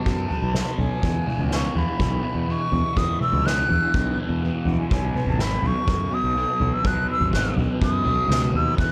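Kaleidoscopic and trippy, this short psychedelic rock excerpt moves at 124 BPM in a straight 4/4, with a mellow silver concert flute carrying an expressive solo from the very start. The flute sounds airy and soft-edged, with vibrato and a tape echo that trails each phrase high above the band. Beneath it, a double-tracked fuzz guitar plays a low riff through distortion and phaser, its tone warm and picked. A round, dark fingered electric bass, overdriven and fuzzy, and a soft-mallet drum kit join at 0.1 seconds, the kit distant and roomy yet with a punchy kick up front alongside snare and toms. The harmony shifts from B5 to E5 at 1.0 seconds and settles on B at 4.9 seconds, all within an echo-heavy mix touched by light, small-room reverb.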